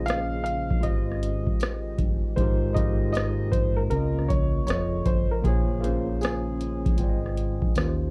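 Lo-fi hip hop with a mellow, dreamy mood, cut from a longer piece and built on a lazy swung groove in four. A booming analog drum machine sits up front with a deep kick, metallic hats and rim clicks, re-recorded in a small room, while a faint tambourine jingles far off in the background of a large space. A round, punchy dub bass played with the fingers anchors the low end, and a clean tine electric piano heard through its built-in speakers carries the accompaniment with a cassette tint. The woody, slightly detuned upright piano carries the melody with long sustain and audible action noise, entering at 0.0 s and falling silent at 7.7 s. Beneath it all, a very quiet, moody sawtooth pad with a sub octave, chorus and slow attack holds sustained chords drawn from the minor-ninth, major-thirteenth, sixth and dominant harmony, and the whole mix is bathed in light reverb and the warble of worn old tape with drifting pitch.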